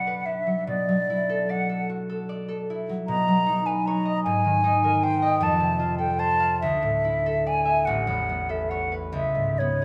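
A hollow, silver-toned flute sings the melody up front with tongued notes and vibrato, while a bright, ringing fingerpicked harp supplies the accompaniment in this hazy, wistful impressionist classical fragment in 6/8, its uneven, rubato beats and added-tone chords bathed in the wet reverb of a recital hall.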